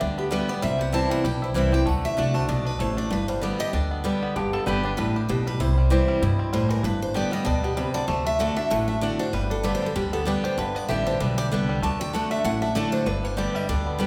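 A swung 4/4 pulse at 193 BPM drives this joyful, lively bluegrass excerpt in G major, cut from a longer piece and moving through G, C and D chords. A twangy, percussive fingerpicked banjo and a bright dreadnought guitar with audible finger squeak carry the melody, while a second picked guitar sits up front with warm accompaniment and a woody, growly pizzicato upright bass anchors the low end. A metallic, nasal lap resonator slide adds a brief second line at 4.4 seconds, and the recording rings in the wet reverb of a church or concert hall.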